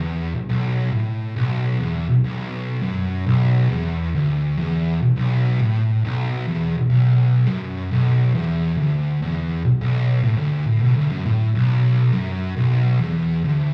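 A lone fuzz guitar opens this short metal excerpt, playing by itself from the first moment to its close at 13.7 seconds. The mood is ominous and brooding, set at a steady, straight four-four pulse. The electric guitar is picked low in its range, its distorted, double-tracked tone thick and up front in the mix. The sound is that of a live gig heard through the venue's PA, with a moderate club reverb lending the room some air. Cut from a longer piece, the passage stays within a single section, holding its heavy, menacing character throughout.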